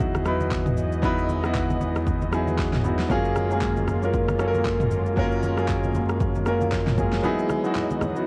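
A loping amapiano groove at 116 BPM in 4/4, swung on the sixteenths, sets a warm, soulful mood in E major as chords move from Emaj9 to F#maj9 and back, in this short cut from a longer piece. A clear, intimate grand piano with audible action noise sits up front over a punchy deep house kit of kick, fat snare, handclaps, rim click, shaker and toms, roughened by 12-bit sampler grit, while low-tuned congas ring very quietly and a lush, nasal detuned-saw pad breathes in the background with chorus and sidechain pumping. A deep, mellow sine-and-triangle sub bass with octave drops out at 7.2 seconds as the kick mutes, and the whole mix carries light reverb, warbling cassette wear and vinyl crackle.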